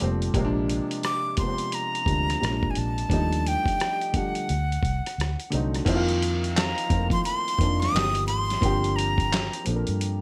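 R&B and neo-soul in an introspective, late-night mood, this short excerpt moves at 87 BPM in 4/4 with a swung sixteenth-note feel. An upright piano, woody and slightly detuned with audible action noise, sits up front as accompaniment, voicing rich extended chords such as Bb9, Ebmaj9#11 and D7b9 before turning toward F7sus4 and G7alt in the second half. Beneath it, a vintage foam-muted fingered electric bass gives a dark, round, punchy low end. A compressed, gritty sampler-style drum kit supplies a thumpy kick, medium-tuned snare, rim clicks, hi-hat, handclaps and crash cymbal. The jazz flute enters at 1.0 seconds with a breathy, reedy straight tone, crisp chiff on its attacks and a plate reverb, carrying the melody in its upper register until 9.7 seconds. A moderate studio room ties the parts together.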